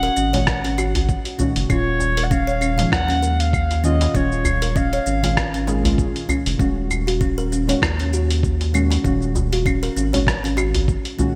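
This organic downtempo excerpt feels mystical and hypnotic, with a gentle swing over a steady four-beat pulse. A dark, distant clarinet sings a classical-style solo melody that drops out at 5.7 seconds, its roomy tone trailed by digital delay. Underneath, a deep, mellow chord stab built from detuned, wave-folded tones pumps with sidechain compression, chorus and delay. A woody, hollow-sounding kalimba plucks airy arpeggios through delay. A round, up-front analog bass adds tube-saturated depth. A gritty, overdriven sampler-style kit of claves, hi-hat, rim click and shaker is joined by a thumpy electronic kick from 0.5 seconds, while a soft-handed djembe sits close and dry in the background. The production has a bright 1980s digital sheen, with light reverb and a small-room ambience.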